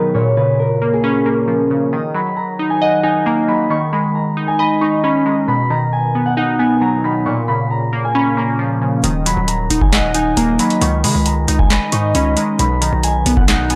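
Dark and brooding, this half-time trap excerpt opens with a ringing, thumb-plucked concert harp melody, muffled by a low-pass filter and an analog delay, over up-front glassy digital keys with chorus, until at 9.0 seconds a saturated, distorted 808-style bass and a booming analog drum machine with a deep kick, crisp snare, handclaps and metallic hats arrive, all captured in a dry, gritty hardware recording with digital ambience.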